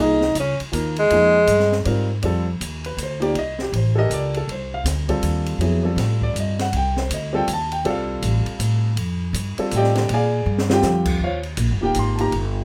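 Modal jazz in F mixolydian with a spiritual, open mood, swinging in 3/4 at 160 BPM: a breathy tenor saxophone with light vibrato and scooped notes sounds a brief, distant solo phrase that ends at 1.8 s, over a smooth, deep-voiced grand piano, a woody, growly pizzicato upright bass and a jazz kit with dark cymbals, a high-tuned snare and a boomy kick that enters at 0.2 s and plays a short fill at 10.5 s, all in light reverb as the chords move from Fm through F13 and Bb9 to Eb69 in this excerpt from a longer piece.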